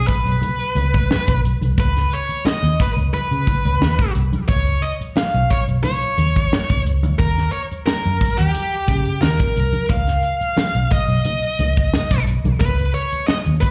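Funk with a hypnotic, sly feel, cut from a longer live gig heard through the venue's PA on cassette with club reverb, where a distorted, high-gain lead guitar carries the up-front melody through plate reverb, slapback echo and analog delay over a dark, round, foam-muted fingered bass, a crisp fusion kit with a high-tuned snare, punchy kick and 12-bit sampler grit, and thick-skinned congas with slapback echo tucked in the background as the chords move from C#sus2 to D#7#9 at 7.2 seconds and C#9 at 9.9 seconds.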